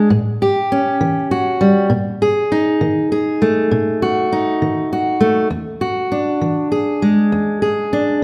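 In a straight 12/8 blues feel, a lone fingerpicked steel-string acoustic guitar sounds rollicking and gritty, its dark, up-front tone moving from A7 to B7 before landing on E7 at 5.5 seconds, all bathed in the lush reverb of a recital hall in this short excerpt cut from a longer piece.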